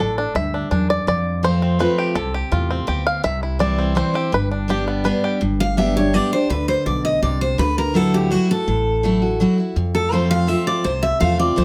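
Lively and joyful, this bluegrass excerpt moves at 166 BPM in a brisk, straight 3/4, set in G mixolydian. A twangy, percussive banjo played with fingerpicks opens with an up-front solo melody until 5.4 seconds. A picked steel-string acoustic guitar then carries the tune from 5.6 seconds with a full-bodied dreadnought tone. Underneath throughout, a second picked acoustic guitar plays bright, fresh-stringed accompaniment, while a pizzicato upright bass adds a woody, growly low end. The harmony cycles through Dadd9, F, C and G, all in a moderate studio room reverb.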